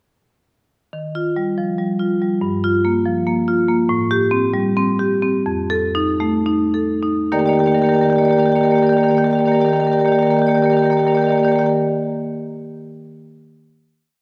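A solo marimba played with medium hard mallets carries this short contemporary classical piece, its rippling figuration sounding mid-forward and up front. The mood is warm and playful, set in 7/8 with a free, rubato feel. The marimba enters at 0.9 seconds and moves through a brief harmonic journey before the music gradually slows from 3.2 seconds. At 7.3 seconds it settles onto a final Ebmaj7 chord, which rings until the piece closes. A wet concert hall reverb surrounds the instrument, lending the whole piece a spacious, resonant glow.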